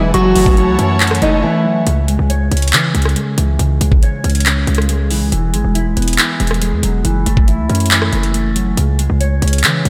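A dark, boxy fingerpicked steel-string acoustic guitar carries the melody up front from the start, filtered and trailed by delay. Beneath it sit a clean, compressed electric guitar with lush chorus, smooth bowed symphonic strings holding sustained chords, and a soft FM synth bell in the background adding a pure, chorus-and-phaser-tinged second line. The acoustic guitar, strings and bell fall away at 1.8 seconds during a short break, leaving the mellow electric guitar, a punchy, heavy 808 bass and an electronic trap kit with a knocking kick, metallic hi-hats, handclaps and rim clicks to drive the half-time groove through to 9.9 seconds. The harmony moves through minor seventh, minor and add9 chords. This menacing, hard-hitting hip hop and trap clip, cut from a longer piece, is soaked in a lush hall reverb that gives the mix a dreamy haze.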